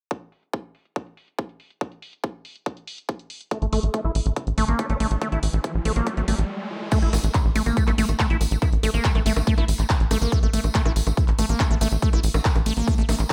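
Lightly reverberant and punchy, this alien, psychedelic trance excerpt at 141 BPM in 4/4 opens on an up-front electronic kick and a layered drum kit of low-pass-filtered bongos, crash, handclaps and hi-hat in a small room; a tight, nasal, sawtooth sequencer bass and a squelchy, resonant liquid acid bass riff with phaser, delay and sidechain pumping arrive near 3.5 seconds, an electronic riser builds from 4.4 seconds and a very quiet, wobbling vowel-sweep formant bass enters at 4.8 seconds, both leading into a short break, and a jingly, saturated tambourine joins in the background at 6.9 seconds.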